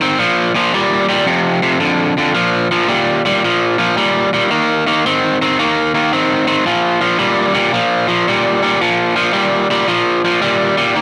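An overdriven electric guitar plays alone, bright, compressed and picked up front, moving through soulful, rollicking blues with a swung feel, strumming power chords on Bb, F and Eb, all set in light digital reverb in this short cut from a longer piece.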